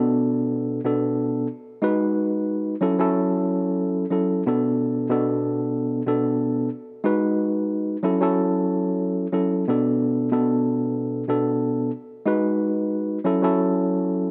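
Tough yet reflective, this hip hop fragment cut from a longer piece moves at 92 BPM in 4/4 with a light 16th-note swing. A tine electric piano plays alone throughout its 14.3 seconds, ranging from B2 to B4, its tone worn and slightly out of tune but clean, direct and up front. High-pass and low-pass filtering trim the piano's edges, while a moderate plate reverb with a 2.6-second tail gives the space a gentle bloom. The harmony cycles through Bm7, G#m7 and F#m7, returning to Bm7 at 4.5 and 9.7 seconds before the opening section begins again at 12.3 seconds. The result feels intimate and weathered, a single keyboard carrying the whole groove.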